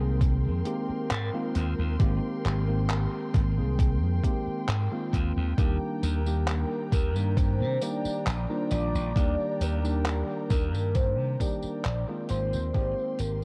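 A hazy, echo-heavy cassette sound with light reverb frames this nostalgic, woozy vaporwave fragment in Eb major, moving at a slow 67 BPM in a straight 4/4 over Abmaj9 and Ebmaj7 chords. A punchy, amped slap bass and a thumpy, tape-warm electronic kick sit up front, joined by a dry funk kit of handclaps, hi-hat and tambourine, while a bell-like tine electric piano with chorus, 12-bit sampler grit and delay plays accompaniment over dark, woody bowed chamber strings holding sustained chords. At 6.0 seconds a velvety synth lead of sawtooth, triangle and square waves with a sub octave takes the melody, shimmering with chorus, tremolo and tape echo, before the whole piece fades out from 10.4 seconds.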